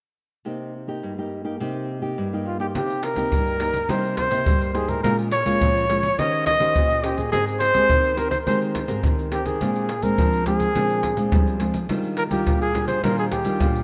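A straight 4/4 samba-and-choro groove takes hold at 2.8 s, when a tight, compressed and saturated percussion section of egg shaker, surdo and pandeiro sits up front beside a thumb-plucked nylon-string bass guitar. The warm, classical nylon-string accompaniment opens alone at 0.4 s, and a dark, jazz-style solo trumpet enters at 2.5 s, carrying a yearning, nostalgic melody with vibrato, scooped notes and a smooth top over chords that drift from Cm7 through Abmaj9 to Ebmaj9. A moderate plate reverb and a rough home-demo mix colour this section cut from a longer piece.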